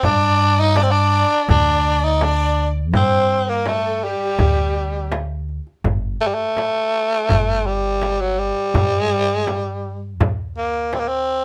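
An Arabic maqam ensemble piece in G minor at 82 BPM, soulful and hypnotic, cut from a longer performance, with a raspy, gritty tenor saxophone carrying the melody up front with bright vibrato. A lush bowed violin section plays a second line in the background until 5.1 seconds, while a woody, growly pizzicato upright bass holds the low end. A crisp, deep metal-shell darbuka sits back in the mix beside a small, close and dry frame drum under light reverb, and the music moves into a new section at 5.8 seconds.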